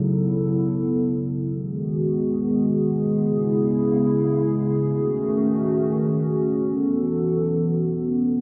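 A dark, detuned analog pad plays alone from the start, its slow attack and long release giving this short hip hop fragment a melancholic, hazy mood in free time. Sitting up front with a chorus effect and a deep sub octave, it sustains chords moving from B9sus4 through G#m7, C#m7 and F#m69 before returning to B9sus4 at 6.6 seconds. A lush hall reverb with a 2.5-second tail surrounds the sound until the piece is cut off at 8.4 seconds.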